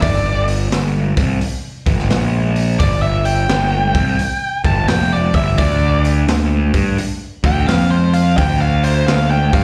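Driving and swaggering, this short excerpt of blues rock and southern rock rolls at 86 BPM with a swung 4/4 feel, as a bright, biting overdriven lead guitar with slapback echo solos over a fuzzy, up-front picked electric bass and a raw garage drum kit of punchy kick, medium-tuned snare and hi-hat, gritty and pumping in a small room, all heard like a live club gig through the venue's PA, with the harmony landing on D minor at 5.6 seconds.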